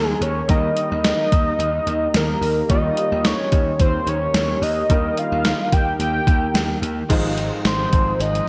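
A lightly swung 4/4 groove at 109 BPM drives this uplifting, nostalgic 1980s-style pop fragment, where an up-front gated drum machine with a thumpy kick and overdriven gated-reverb snare backs a fat, warbling sawtooth analog lead with chorus and vibrato, joined by gritty, punchy slap bass, a clear baby grand piano and a shimmering, ethereal pad with phaser in the background over Ebadd9, until a crunchy double-tracked guitar and a funky, detuned polysynth comp slip in very quietly at 7.1 s as the harmony shifts to Fm7/Ab, the mix framed by a bright digital sheen and plate reverb.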